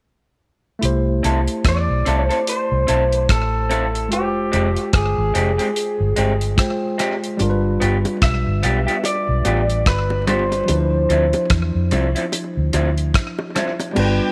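A swung 73 BPM groove in 4/4 from a damped 70s drum kit with a tight kick, dark cymbals and slapback echo, alongside a round, foam-muted fingered bass, sets up this sweet, smooth lovers rock reggae in C major, where a clean tine electric piano with slapback echo and slightly broken-up guitar stabs through harmonic tremolo carry the chords from C6 to Dm9, a lo-fi, compressed guitar melody with tape echo sits on top, low-tuned bongos join in the background at 7.4 s, and lush bowed strings appear only at 14.0 s.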